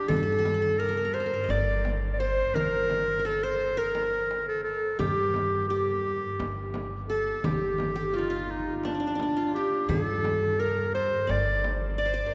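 A long cathedral reverb surrounds this short cut from a Turkish makam ensemble piece, recorded in a church or concert hall, giving it a hypnotic, melancholic haze. At 171 BPM counted in eighths, the music moves in a straight 7/8 in makam Ussak on G. A classical-style clarinet sits up front as the solo melody, its tone warm between D4 and D5. Alongside it a qanun carries a second line, its fingerpicked triple strings bright-edged. A pizzicato upright bass with gut strings supplies a woody, thumpy low end from G1 to G2. In the background, a small, warm clay-shell darbuka with a natural skin adds a high voice, while a deep, large, vintage-sounding frame drum with a band-limited tone fills out the percussion.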